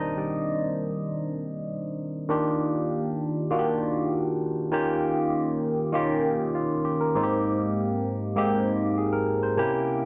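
Lush and warm, this short soul cut features a solo tine electric piano that sounds bright and barky, lightly overdriven through a combo amp with a phaser, sitting up front in a dry, close 1970s-style studio recording with light reverb as it moves through Ebmaj7, Eb9 and Abmaj7 chords across its 10.1 seconds.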